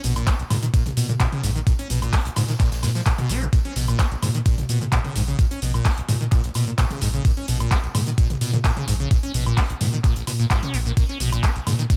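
Acid house with a raw, gritty mood, this short cut from a longer piece sits on a single Bbm chord in a straight 4/4 groove. A squelchy, resonant sawtooth acid bass carries the riff up front, bright and saturated with a filter sweep, fast decaying notes, lush chorus, tape echo and sidechain pumping. Beneath it a round, deep analog bass blends detuned sawtooth, sine and triangle tones into a dark, sustained low end, also tube-saturated and pumping. An overdriven, thumpy sampler-style kick enters at 0.3 seconds and sits up front. Around it an analog drum machine adds handclaps, metallic hats, shaker, toms and woodblock with a tape-softened edge, while a crisp acoustic kit with a high-tuned snare, hi-hat and tambourine stays in the background. The whole track sits in a small room ambience.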